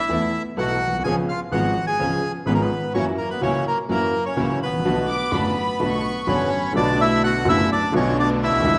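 A rubato tango in 4/4 at 126 BPM and B minor, this tense, dramatic excerpt sets a reedy, dark bandoneon melody up front over an intimate concert grand piano with deep bass, audible action noise and long sustain, while a clear, focused symphonic string section adds distant, lush stabs in the background. From 5.1 to 6.8 seconds a violin section floats a pure, sul tasto second line with a soft attack and smooth top, before the passage moves into a new section at 6.8 seconds. The harmony travels from Esus4 through C#7 and F#7 to Bm7, all heard in a wet recital-hall reverb that suggests a church or concert hall.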